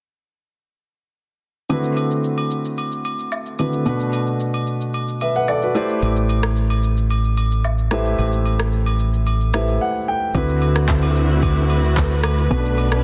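A dense, heavily limited mix with light reverb carries this late-night, hypnotic amapiano excerpt, where an up-front grand piano with short sustain accompanies a soft, tape-toned electronic drum kit of kick, rim click, shaker and handclaps alongside small-room agogo bells and woodblock; a round, punchy fingered electric bass enters at 6.0 s, and after a piano fill and a brief break, a dark, lush bowed string section with vibrato joins at 10.3 s.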